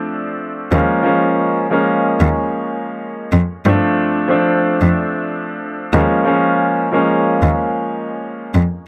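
A swung, head-nodding boom-bap hip-hop groove in 4/4 sets a tough, gritty mood, as a vintage-toned concert grand piano opens alone with rootless G9sus4 and Eb9sus4 voicings, its audible action noise and cassette-tape, filtered color sitting up front. At 0.7 seconds a single bowed cello enters on the bass line, played sul tasto with an airy bow, soft attack and light vibrato, intimate and close. A lush plate reverb soaks the whole mix in a dreamy haze across this short fragment of a longer piece.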